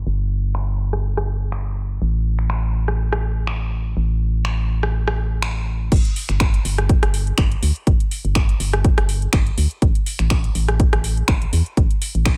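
A hollow, organ-like FM bass opens this moody, smooth deep house excerpt, its dark, percussive notes striking with a fast attack, decaying and pumping against a sidechain up front in the mix. At 0.5 seconds a layered house drum kit joins with metallic hi-hats, finger snaps, rim clicks and a crash cymbal, all sitting lower in the balance behind the bass. A filter sweep runs through the opening stretch, and the whole recording is shaped by a low-pass filter and kept dry with little reverb. At 5.9 seconds the drop lands as a punchy, tape-warm electronic kick drum enters prominently and carries the groove to the end. The 4/4 pulse has a gentle swing on the sixteenth notes, giving the polished production a relaxed, rolling feel.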